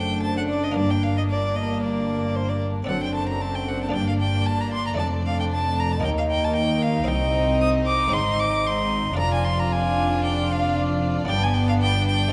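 A baroque-style classical concerto movement in G minor, this stormy, driving passage is cut from a longer piece and moves at 114 BPM in a straight 4/4. A solo violin sits up front, its smooth, even tone carrying the melody high above the ensemble, while a chamber violin section shares the melody from the background with focused vibrato. Beneath them, a second violin section plays a soft-attacked sul tasto second line, and a lush symphonic viola section fills in the accompaniment at close range. A buff-stop harpsichord adds a muted, lute-like pluck from the background, and cello and double bass sections anchor the bass with a rich, smooth sound. The harmony moves from D7/F# to G minor, then through Cm, Ab and a diminished chord before closing on G major at 11.3 seconds, all in a moderate recital hall ambience.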